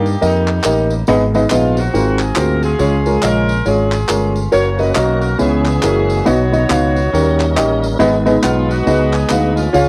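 A jubilant, hopeful uptempo gospel passage at 139 BPM with a swung 4/4 feel opens with a distant, roomy saxophone section carrying the melody through a tape-worn cassette tone. Beneath it sit a woody, slightly detuned upright piano with audible action noise and a bright, punchy fingered electric bass, both up front, while close, dry tambourine and group handclaps join at 0.1 seconds. At 4.5 seconds a full tonewheel organ slips in behind them with sustained chords, key click, chorus vibrato and a fast rotary speaker, all in a small, lightly reverberant room on a home cassette recording cut from a longer piece.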